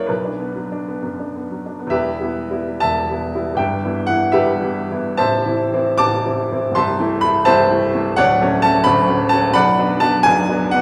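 Stormy and brooding, this short passage cut from a longer piece is a romantic character piece for solo piano in 6/8, played with a free, rubato feel. A bright grand piano carries everything alone from 0.0 to 10.8 seconds, its tone brilliant and open with short sustain, sitting up front in the sound. The playing spans the keyboard from the deepest A0 to D6, so low notes sit beneath the upper register. After a brief opening on B minor, a new section begins at 1.9 seconds, and the harmony moves through E minor, A minor and a D major seventh before settling back on B minor. A wet recital hall reverb lets the notes bloom into a resonant church or concert hall space, deepening the brooding atmosphere.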